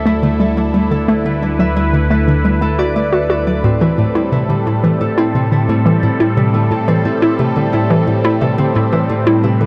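A straight 4/4 pulse at 88 BPM in A minor carries this expansive, cosmic stretch of sequencer-driven space music, where a bouncy, vintage square-wave pluck plays a chorused, delayed riff as a filter sweep moves across the synth arpeggio sound, a ringing fingerpicked Celtic harp spins delayed arpeggios, and an up-front, swirling, detuned analog pad with phaser and chorus holds sustained chords that move from Dsus2 to Am7 at 3.6 seconds, all bathed in a huge ambient reverb.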